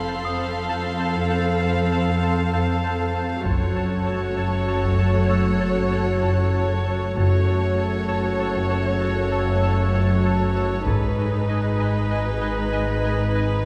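Ominous and tense, this slow cinematic suspense cue at 65 BPM moves from F through F#m to Abm, with a sul tasto violin section carrying the melody over dark violas, woody cellos and a very quiet bowed double bass section, while a soft-mallet marimba riff, a pulsing gated texture with chorus, and an evolving analog drone with phaser sit beneath faint high violins and a slightly out-of-tune, bell-like celesta, as a close, dry taiko ensemble strikes in the background at 3.5 s and again at 10.9 s, all within a concert hall reverb.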